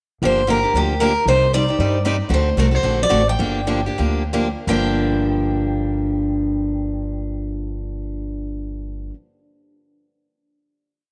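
Swinging and virtuosic, this complete short piece of acoustic string swing in G minor moves at 162-232 BPM, slowing from 2.3 to 4.7 seconds through Gm7, Cmadd9 and D7 before settling on a held Gm7 final chord. A full-bodied jumbo steel-string guitar carries the melody in motif-based call phrases, while a second, bright concert guitar with audible finger squeak plays four-to-the-bar rhythm, short and accented on two and four. Underneath, a woody, thumpy gut-string upright bass plucks a two-beat root-and-fifth line with walk-ups, all up front within a moderate plate reverb.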